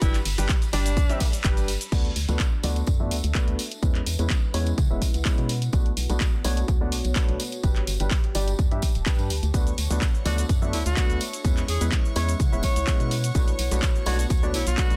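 Dense and heavily limited, this uplifting piano house excerpt rides a punchy, up-front electronic kick, a house kit of claps, hi-hat, shaker, ride and crash, a background tambourine and a hollow, organ-like FM bass, with a clear baby grand riff pumping under sidechain and tape echo throughout, a soft, floating violin section holding chords at the opening and again from 9.5 seconds, a lo-fi, warbling pad entering at 2.5 seconds, and a clear alto saxophone with light vibrato carrying the melody at the start and from 10.3 seconds.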